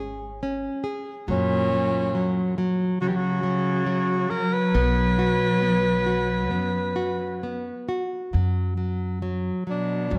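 A breathy tenor saxophone sits up front and carries the melody from 1.3 s, its whispered, scooped notes and vibrato giving this mournful, longing fado-style ballad an intimate jazz voice at a rubato 68 BPM in 4/4, tuned to A4 = 435 Hz. A fingerpicked nylon-string guitar, also up front with audible finger squeak, and a woody pizzicato upright bass play from the start, while a bowed cello joins at 1.3 s with expressive portamento and vibrato as a second line. Moderate plate reverb soaks the dreamy mix, and the music moves into a new section at 8.3 s in this passage cut from a longer piece.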